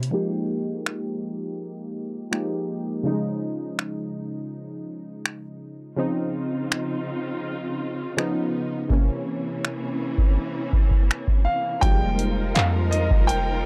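Dry and close, this moody, sensual contemporary R&B excerpt in F minor moves at 82 BPM, with a booming, overdriven analog drum machine of deep kick, metallic hats, snaps and handclaps up front, round detuned sawtooth keys with chorus under a filter sweep carrying chords from Fm11 through Dbmaj9 to C7b9, distant bowed strings with vibrato and portamento joining at 6.0 s, a grand piano melody with tape echo entering at 11.4 s, and a deep, boomy sine 808 bass arriving at 11.8 s.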